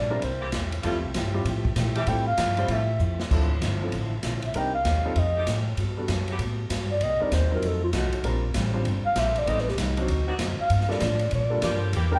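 Big band swing at 195 BPM in F major, this brassy, swinging excerpt features a breathy, close-miked clarinet soloing with dark subtone and vibrato over woody pizzicato upright bass up front, a background picked jumbo acoustic guitar, a present baby grand piano, smooth sustained saxophone section chords and a polished drum kit with dark cymbals that plays a fill at 3.0 seconds, all heard as a band playing live in one room with moderate large studio reverb.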